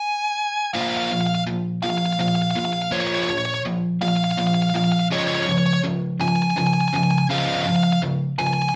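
A nasal, overdriven lead guitar through a parked wah opens this brooding, melancholic rock excerpt in Bb minor with a melody at 0.0 seconds, joined at 0.7 seconds by a biting, double-tracked overdriven guitar riff on a Bb5 chord that shifts to Db at 5.1 seconds, as the band builds in a slow 6/8 at 55 BPM, playing live together in one room with both guitars up front in a wet studio reverb.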